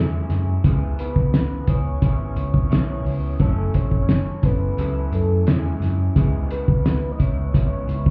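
Indie bedroom pop at 87 BPM in C# minor, this wistful, hazy excerpt drifts over F#7(no3), C#m7 and F#m7 chords. A soft, detuned octave-layered synth lead with vibrato carries the melody through analog chorus and tape echo, above a slightly broken-up, compressed electric guitar bathed in lush chorus and warbly pitch drift. A round, punchy hollow-body bass and a cloth-damped, gritty drum kit with a fat snare and tight kick, entering at 0.3 s, sit up front, and the whole mix sounds muffled through a wall with small-room ambience and club reverb.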